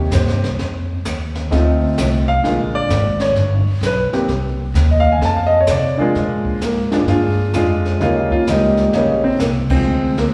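Swinging in 4/4 at 129 BPM, this sophisticated jazz piano trio fragment in Bb mixolydian sets an up-front, warm grand piano on the melody beside a woody pizzicato upright bass, while a distant brush kit with dark cymbals, a high-tuned snare and a boomy kick enters at 0.1 seconds, piano and drums both carrying a slapback echo, the whole heard as a live gig through the venue's PA in recital-hall reverb, with a band accent at 9.6 seconds.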